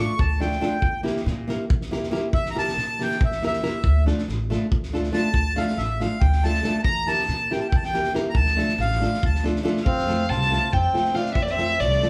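A reedy accordion with slow beating takes the lead from the start over fingerpicked, full-bodied nylon-string guitar, with growly pizzicato upright bass and a muffled, lo-fi drum kit of fat snare and tight kick joining almost at once. This bittersweet, fiery Balkan wedding-band tune runs in a brisk 7/8 at 279 BPM in D minor, moving between Dm and Edim as the band plays live in one large room with moderate reverb. At 9.8 seconds a dark, woody bowed violin with vibrato enters up front on the melody as the harmony moves to F, before this excerpt of a longer piece cuts off.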